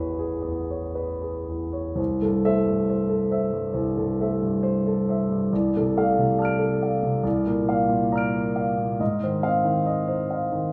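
Bathed in a recital hall's lush reverb, this luminous, dreamy fragment of impressionist classical solo piano drifts in rubato at 56-71 BPM, its up-front concert grand spanning C2 to D7 with deep bass, an open tone and long sustain as the harmony glides from Amaj9 to C6 at 2.0 seconds and on to Ab6 at 9.0 seconds.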